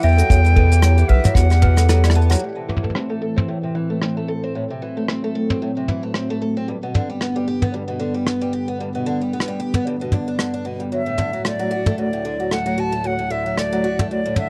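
Autumnal and delicate, this dry, close, 1970s-style folktronica excerpt opens with an airy flute melody over a clanky, slightly out-of-tune toy piano line and a deep round analog bass, joined at 0.3 seconds by a kick drum, all falling away after a brush-kit fill by 2.4 seconds, while a warbling, nostalgic tape-like pad with chorus, shimmering octave-doubled arpeggios from a woody, filtered twelve-string acoustic guitar, and up-front soft brushes carry on until the vibrato-tinged flute returns with tape echo at 10.9 seconds.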